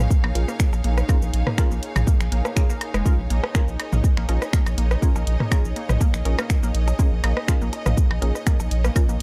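A round, deep analog bass and a lush, bowed symphonic string section open this sparse, quirky minimal techno excerpt on a single Bbm7 chord, both pumping under the sidechain while a punchy electronic kick sits up front with a small-room ambience. A house kit of finger snaps, hi-hat and shaker joins a tape-warm click kit of blips, rim clicks and toms, lightly swung on the 16ths. In the background, a squelchy, resonant blip pluck with 12-bit sampler grit, chorus and delay sits alongside a muted, filtered dub chord stab trailing echo, all in a dark, dry production.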